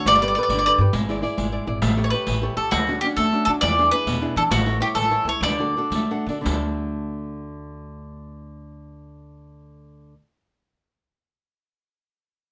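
A lush, reverberant studio ambience surrounds this short Italian folk serenade, cut from a longer piece and carrying a sunny, romantic mood in a straight 6/8. Up front, a bowl-back mandolin sings the melody with picked double strings and a warm acoustic tone. Beside it, a small-sounding nylon-string guitar fingerpicks the accompaniment through a progression that moves from Gadd9 through A7 and Dmaj7 toward A and D. An upright bass plucks woody, thumpy gut-string notes underneath, while a riq adds bright jingles from a distant, large-room space. The music slows from 4.5 seconds, the guitar slips in a brief fill just before 6.5 seconds, and a new section then begins with the guitar and bass carrying on after the mandolin has finished.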